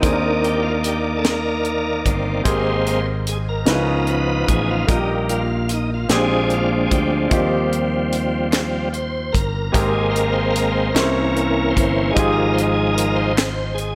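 Soulful and jubilant, this slow gospel passage in 6/8 is led by a gritty, overdriven tonewheel organ that carries a solo up front throughout, colored by chorus vibrato and a stopped rotary speaker, over rich extended chords such as Cm9/Eb, Abmaj9 and Bb13. A clear, polished concert grand piano adds accompaniment with short sustain, while a punchy fingered electric bass and a tight funk drum kit with a high-tuned snare keep the groove. A crisp group handclap joins in the background at 8.5 seconds, all set in a moderate concert hall reverb.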